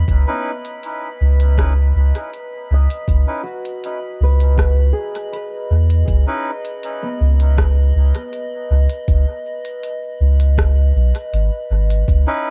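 Ambient dub at 80 BPM in C# minor, deep and hazy, built on a round, up-front sub bass beneath a muffled, pitched-down kick and a crisp electronic kit of hi-hat and rim click carrying dub echo. A warbling, detuned tape-like pad holds a C#7sus2 chord alongside a drifting, glassy harmonics texture, while a mellow, ringing concert harp plays arpeggios through tape echo until 10.1 s. A reedy, breathy melodica adds filtered stabs with dub echo, stopping at 6.5 s and returning at 12.3 s, all within a dark, dry production.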